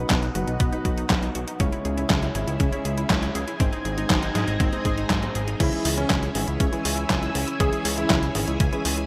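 Bittersweet and nostalgic, this italo disco excerpt in C# minor moves at 120 BPM in a straight 4/4, cut from a longer piece. A lush, vintage string machine holds sustained chords with ensemble chorus and a filter sweep across the first 5.6 seconds, while a detuned, ring-modulated analog pluck spins arpeggios in the background through chorus and delay. A dark, boxy concert grand adds filtered stabs further back, and a fat sawtooth bass anchors the low end beneath a thumpy, overdriven electronic kick and an up-front, gritty 8-bit drum machine of crash, handclaps, hi-hat and snare. At 5.6 seconds the second section begins on C# minor, and a warm electric grand piano carries a brief melody with chorus and delay until 8.2 seconds. A moderate plate reverb and bright 1980s-style digital production frame the chords moving from B through C# minor and G#.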